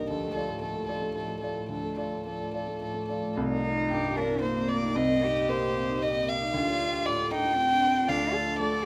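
Intimate and tender, this neoclassical excerpt for piano and strings moves in a rubato 3/4 at 114 BPM, tuned to A4 = 435 Hz, as it passes from D minor through C minor seventh and back to D minor. A close, up-front solo violin carries the melody with light vibrato and an airy sul tasto bow, while a pure, floating cello traces a second line. Beneath them, a warm grand piano accompanies with audible action noise, and a deep, moody pad of detuned sawtooth and sub-octave sine, warbling with chorus and its own reverb, sustains chords in the background. At 3.4 s a mellow, dry vibraphone with soft mallets joins with ringing arpeggios, and the room is a moderate large studio reverb.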